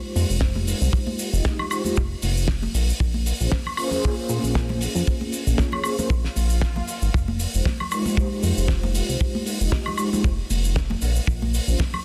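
A lightly swung 16th-note groove at 116 BPM drives this cosmic, groovy nu-disco excerpt in Bb dorian, where a tight, dry, up-front kick and a damped 70s kit with a fat snare, hi-hat, shaker and woodblock sit in a small room alongside hard-handed congas in the background, while a glossy, nasal chorused synth bass and a round, detuned synth brass with filter sweep, vibrato, sidechain pumping and analog delay carry Fm7 and Bbm7 chords, and an electronic swell appears briefly at 6.3 seconds in a dense, heavily limited modern master.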